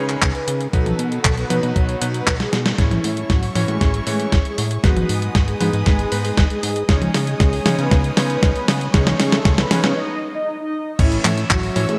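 Nostalgic and bittersweet, this italo disco passage moves at 117 BPM in a straight 4/4 in C# minor, cut from a longer piece and built on a bright 1980s-style digital production bathed in a lush hall reverb. A round, dark synth brass carries the melody with chorus, delay and vibrato, while a bowed studio string section holds smooth sustained chords in the background. A cutting, clangy electric grand piano adds stabs through a low-pass filter and delay, and a fat, detuned analog bass with a filter pluck anchors the low end. A clean 12-bit drum machine, up front with a medium-tuned snare, handclaps, hi-hat, toms and crash, enters at 0.1 seconds and is joined by a thumpy electronic kick at 0.2 seconds. The chords move from C#sus2 and B to A at 2.8 seconds after a drum fill and band accent, then through G#m back to C#sus2, before a break from 10.0 seconds leads into a return to A.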